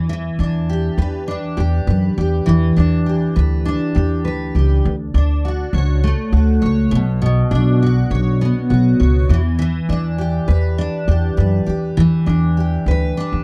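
A double-tracked, full-bodied picked steel-string acoustic guitar and a woody, thumpy pizzicato upright bass on gut strings sit up front together from the start of this easy-going, carefree acoustic pop passage with a light swing, moving from Em7 through Dmaj7 and Bmadd9 before returning to Em7 at 9.3 seconds in a dry, close 1970s-style studio recording.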